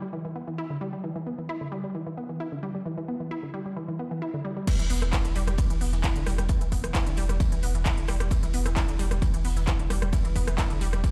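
A squelchy, resonant blip pluck riff with chorus, tube saturation, sidechain pumping and tape echo opens this intense, industrial peak-time techno excerpt alone, until the drop at 4.7 seconds brings in an overdriven, heavy electronic kick up front, a layered techno drum kit of crash, ride, smooth hats, handclaps and rim clicks, and a very quiet dry 70s kit of hi-hat and snare, joined a moment later by a round sine sub bass pumping beneath a low-pass filter, all set in a big, bare-room sound with large studio reverb.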